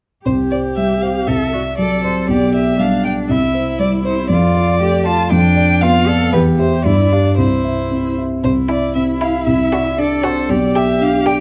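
A quick classical-period movement for piano quartet in C major, this lively, spirited excerpt moves at 118 BPM in a straight 2/4. An up-front bowed violin with focused vibrato carries the melody over a rich cello second line and a dark, mellow grand piano accompaniment, and a second violin, smooth and even, adds its own line from 8.7 s. A moderate large-studio reverb frames the warm production.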